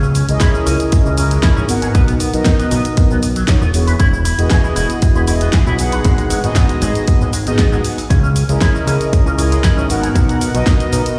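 A big, reverberant sound fills this short nu-disco excerpt, as if played on a large system in a bare room with a large studio reverb and digital ambience, giving it a sensual, cosmic mood at 117 BPM in a straight 4/4 feel, in C# dorian. A pop drum kit with a fat snare, hi-hat and cabasa opens the excerpt, joined from 0.4 seconds by a punchy electronic kick that sits up front, both layered and re-recorded in a small room. A fat, saturated analog bass built from detuned sawtooth and square waves carries the low end with a plucky filter and sustained notes, also placed up front. Mellow synth brass, round and brassy with a moving notch filter sweep, vibrato, chorus, sidechain pumping and digital delay, provides accompaniment from 0.3 seconds. A dark, clean, picked electric guitar through an envelope filter plays a riff bathed in lush chorus and digital delay, sitting lower in the mix until 10.1 seconds. 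The harmony moves through C#m69, Bmaj7, Emaj9 and G#m7 before returning to C#m69 and Bmaj7.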